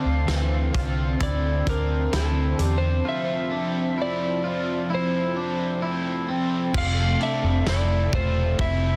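Floating and blissful, this 9-second dream pop excerpt drifts at 65 BPM in F major, moving from Dm7 to Fmaj7 over a smooth, detuned analog pad with chorus, while a dark, slightly broken-up slide guitar carries the melody through delay. A twangy, clean electric guitar plays arpeggios with subtle chorus and delay, and a bright, double-tracked garage guitar adds overdriven accompaniment with harmonic tremolo. Underneath, a round, foam-muted fingered bass enters at 0.1 seconds and a loose indie drum kit with fat snare, punchy kick, cymbals and tambourine joins at 0.3 seconds, all set in a small, lightly reverberant room with a dense, heavily limited master.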